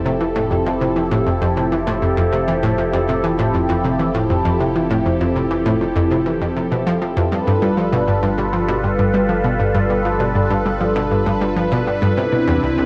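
A straight 4/4 pulse at 99 BPM carries this luminous, cosmic stretch of sequencer-driven space music in F lydian, cut from a longer piece. Up front, a bright, detuned analog pluck with a noise layer and a fast, short filter snap plays a riff through chorus, delay and cassette tape, beside a swirling, evolving sawtooth pad of sustained chords treated with phaser, chorus, tape and plate reverb, while a deep, round sine sub bass sits mellow underneath. The harmony moves from Fmaj7 to G7 at 7.3 seconds and reaches Cmaj7 at 12.2 seconds, set in a wet, homespun cassette ambience.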